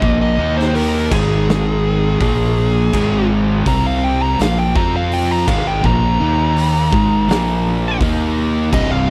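A dry sound frames this sludgy, hypnotic stoner and doom metal clip at 83 BPM in 4/4, where an up-front, compressed fuzz lead guitar with tape echo solos from start to finish over two dark, picked thick fuzz guitars and a bright, double-tracked overdriven guitar riffing in the background, a growly, punchy fuzz bass, and an oversized low-tuned drum kit with a boomy kick, fat snare, dark cymbals and a gritty, pumping room that drops out at 8.9 seconds.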